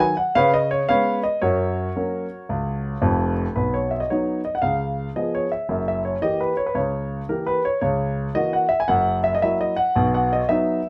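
A solo concert grand piano opens this exuberant stride jazz excerpt with a C#5 chord at 0.3 s, moving to F# before the harmony settles on B at 3.5 s. The tempo is a lively 112 BPM in 4/4, with a swinging feel on the eighth notes and the instrument tuned to A = 438 Hz. The piano ranges from a deep bass E#1 up to G#5, and its warm, intimate tone sits up front, with the action noise of the keys audible. In the second passage, the harmony moves through C#7, F#7b9, F#7/C#, and F#7 before returning to B at 10.0 s. A moderate studio reverb gives the natural sound a touch of room, and the clip ends at 10.9 s as it is cut from a longer piece.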